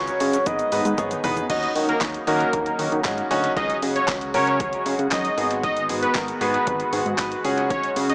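Energetic and driving, this dance-pop excerpt opens with a mellow, horn-like synth lead with warbling vibrato over a present baby grand piano, a shimmering chorused pulse-width pad in the background and a dark, glossy chorused synth bass, all but the lead pumping against the sidechain. A deep house kit with a punchy kick and fat snare plays a fill from 1.0 to 1.5 seconds, and then a fat, detuned analog lead takes over the melody from 1.5 seconds. Dub echo runs through both leads, the piano and the drums, in an echo-heavy mix with moderate plate reverb and a small speaker sound.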